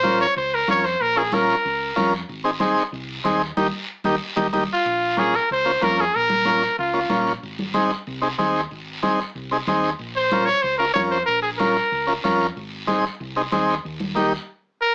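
Cumbia at a brisk 187 BPM in straight 4/4, this joyful, sunny passage is cut from a longer piece and circles Bbm, Ab and Eb chords. An up-front, buzzy combo organ with light vibrato and overdrive carries the accompaniment. A clear, vintage trumpet plays the melody in short pop-style phrases with scooped notes, bathed in plate reverb. Beneath them, a dark, round hollow-body electric bass is fingered with a punchy attack, while thick-skinned, damped congas with a compressed, saturated edge join a raspy, band-limited guiro. The band hits an accent from 3.6 seconds, just before the second section opens at 4.9 seconds, and the trumpet has the final moment at 14.8 seconds, all heard through moderate studio ambience and a small-speaker character.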